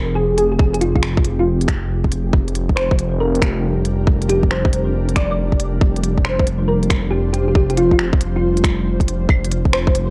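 Future garage at 138 BPM in 4/4 with a heavy 16th-note swing, this short cut from a longer piece feels nocturnal and ghostly, moving from F minor to Gm7/F and landing on a bare F5 chord at 9.3 seconds. A round, tine-like synth pluck with an FM edge and a thin noise layer carries the melody between F4 and D5, its dark, gentle notes softened by ensemble chorus and an analog delay. Beneath it, an ethereal, airy pad holds sustained chords with a slow attack and long release, bathed in chorus and its own reverb and breathing with sidechain pumping. Up front sits a menacing, detuned sawtooth bass on a low F1 whose filter swells and evolves through transformer saturation and sidechain pumping. A crisp kit of claves, finger snaps and hi-hats enters at 0.4 seconds, adding 12-bit sampler grit, and a tight, tape-warm electronic kick follows at 0.6 seconds, sitting up front, both drum parts re-recorded in a large room. 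In the final moments a very quiet reversed granular texture swells in on C5, dreamy and bright, over an overall sound that is dry and gritty.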